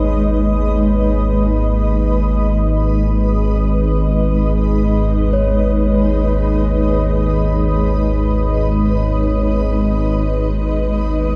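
Floating in free time, this dark ambient drone fragment runs 11.4 seconds over a single minor chord, with a deep, ominous, wave-folded rumble sitting up front alongside a cloudy, detuned granular pad whose sustained chords blur and evolve. In the background, a bronze singing bowl struck with a felt mallet lets out a soft, metallic ring with slow beating, adding a meditative glint. A huge ambient reverb and a dark, warm production give the whole piece a cavernous, dark atmosphere.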